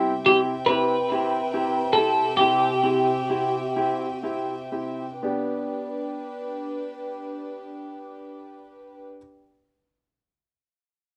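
Heartfelt and tender, this excerpt of a six-eight pop ballad in G major moves at 39-48 BPM in dotted quarters, slowing down through its first 5.2 seconds as the harmony shifts from C to G. A clear, intimate grand piano with audible action noise carries the accompaniment beneath a floating, sul tasto string section holding soft-attack chords. Meanwhile a clean, twangy twelve-string electric guitar sits up front with the melody from 0.3 to 4.2 seconds, colored by lush chorus and tape echo, all in a rough home demo mix with moderate studio reverb and tuned to A4 = 436 Hz.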